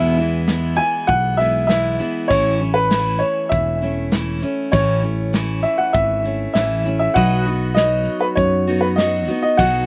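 A clear, woody upright piano carries the melody from the first moment, its boxy tone sitting up front with a slapback echo. Beneath it, a bright, full-bodied steel-string acoustic guitar picks out the accompaniment on fresh strings, and a round, punchy fingered electric bass anchors the low end. A natural-sounding country drum kit enters at 0.5 seconds with hi-hat, a punchy kick and a medium-tuned snare. This is a heartfelt, nostalgic slice of honky-tonk and classic country at 99 BPM in a straight 4/4, moving from E to A and then to B. At 7.2 seconds a twangy pedal steel guitar arrives in the background with sustained chords, played with fingerpicks and slide, its clean, compressed sound softened by volume swells and a lush chorus. The mix is dry and close, with little reverb, and this cut is taken from a longer piece.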